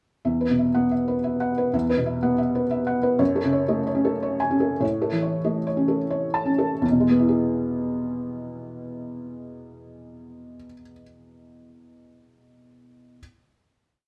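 In a rubato 3/4 that drifts between 83 and 125 BPM, this tender, hopeful neoclassical minimalist piece in E major is played on a solo felt-muted upright piano. Its soft, intimate tone sits up front, with audible action noise, as broad broken chords spanning E2 to A5 carry a second figure in the upper hand through Esus2, F#madd9 and A. The music slows from 2.5 to 6.8 seconds and settles on a final E chord that rings until 11.0 seconds in a moderate stone room reverb.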